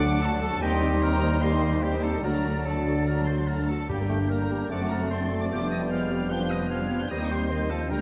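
A stormy, dramatic orchestral passage cut from a longer classical piece opens with the full string body at once: a bright, focused violin section carries the high melody while a second violin section sings a lush line in the background, a very quiet, distant viola section fills in the accompaniment, and a smooth cello section and rich double bass section anchor the bass. Woodwinds thicken the texture from the start, with a clear, slightly vintage solo oboe and a punchy clarinet tracing second lines, and a French horn section holds sustained chords with light vibrato. At 0.6 seconds an airy flute ensemble with lifted highs joins high above, and a mellow solo bassoon adds a low accompanying voice. Very quiet timpani struck with soft mallets give a round, dry accent at 3.9 seconds and again at 7.9 seconds. The harmony pivots between D and C minor before landing on G minor and pressing through dominant-seventh colours. 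A generous scoring-stage reverb and a dark production wrap the ensemble in a dense, brooding sound.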